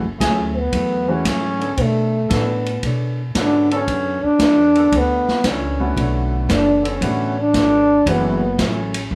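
Swinging and brassy, this short big band jazz cut from a longer piece moves at 115 BPM in F# minor, its eighth notes swung, and rests on a single F#m9 chord. A breathy trombone carries the melody as a solo from 0.2 seconds, mellow and whispered with a soft attack and light vibrato, sitting up front yet roomy, bathed in plate reverb. Behind it, a clear, close-miked trombone section holds sustained chords until 7.0 seconds, while a hollow-body electric guitar plays dark, clean, fingered accompaniment in the background. The upright bass is woody and thumpy, and a baby grand piano with long sustain joins the accompaniment from 1.1 seconds. The distant drum kit brings a punchy kick, medium-tuned snare, hi-hat and ride with a rolled-off top, all set in a moderate club ambience.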